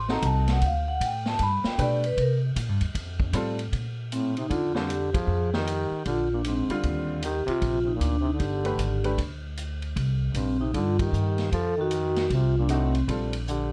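A ringing, dark-toned vibraphone with slow motor vibrato carries the melody over woody, thumpy pizzicato upright bass in this playful, warm excerpt of small-group swing and bop at 154 BPM in Bb major. A clear concert grand piano comps beneath, and a distant, roomy big-band drum kit with a boomy kick and rolled-off top adds vintage 12-bit sampler grit. At 4.1 seconds a raspy, growling trombone with scooped notes enters as a second line, the band hits accents at 5.1 and 10.9 seconds, and the harmony settles on a Bbmaj9 chord near the close, all within light reverb and a dark production.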